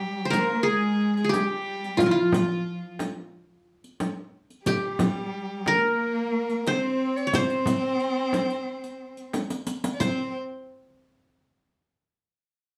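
In a moderately reverberant studio, this festive Arabic maqam ensemble piece in C maqam hijaz moves at 90 BPM in a straight 4/4, with an up-front, fingerpicked qanun carrying the bright-edged melody over a nasal, boxy cello singing with vibrato and portamento and a floating, airy sul tasto violin on second lines, while a small, bright frame drum played with soft hands and a dry riq with dark jingles enter at 0.3 seconds, a drum fill arriving from 9.3 to 10.0 seconds just before this warm fragment of a longer piece shifts into a new section.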